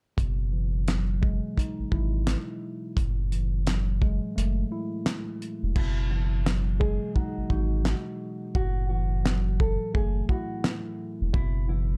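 Tough and dark, this boom-bap hip-hop excerpt moves at 86 BPM with a swung 16th feel, as a mellow tine electric piano with a cassette-tape tint and a filter sweep sits over a deep, round dub sub bass and a cloth-damped, thuddy drum kit with a fat snare, tight kick, handclaps and dark cymbals, pausing for a break at 4.4 seconds before a small fingerpicked nylon-string guitar melody with analog delay enters at 5.8 seconds while the hi-hats fall silent, all cycling through dark, jazzy chords built around Emaj9/F# and F#m9 in a dry, intimate mix.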